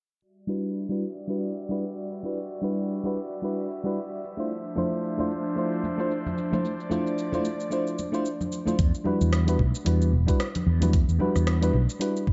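A dark, warm mix bathed in plate reverb carries this smooth, relaxed sunset chillout cut, swung lightly in 4/4. A warbling, vintage FM electric piano with chorus, delay and a filter sweep moves between Em9 and Dm9 over a breathy, detuned pad and a produced R&B kit of cabasa, metallic hi-hat and rim click, with bright, soft-handed congas joining at 4.8 seconds. At 8.8 seconds the pad stops as a punchy, amped fretless bass and a knocking, up-front electronic kick arrive.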